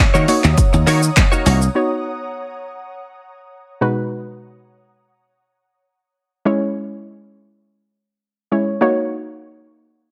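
The recording sounds dry and close, with little reverb, and this short cut from a longer dance-pop piece moves at 102 BPM in 4/4 with a straight, euphoric, summery feel in B major. A punchy, tape-toned analog drum machine with kick, snare, hi-hat, shaker and handclaps sits up front, with a short room on the snare, clap and hats. Beside it, a bright, foam-muted thumbed slap bass pumps under the sidechain. A clean, compressed electric guitar recorded direct picks a riff through analog chorus, while an ethereal, airy pad holds mellow, detuned chords up high with ensemble chorus and its own reverb. A hollow, vintage group handclap sounds in the background at 1.2 seconds. Then the drums, bass, guitar and pad stop at 1.7 seconds, leaving the soft, round, dark pluck to carry the chords alone with a filter sweep and sidechain pumping, moving from D#m7 through Badd9, G#m7/B and C#m before returning to D#m7.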